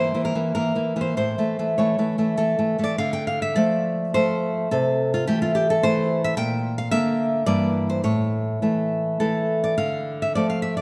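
A warm, fingerpicked nylon-string guitar plays alone and up front in this passionate, intimate romantic classical excerpt in D minor, moving in a rubato 3/4 at about 95-112 BPM and tuned to A4 = 439 Hz, with a brief opening on E and A before the second section settles onto D minor at 3.0 s and winds through B-flat and A back home to D minor at 9.8 s, all carried in the moderate bloom of a scoring-stage reverb.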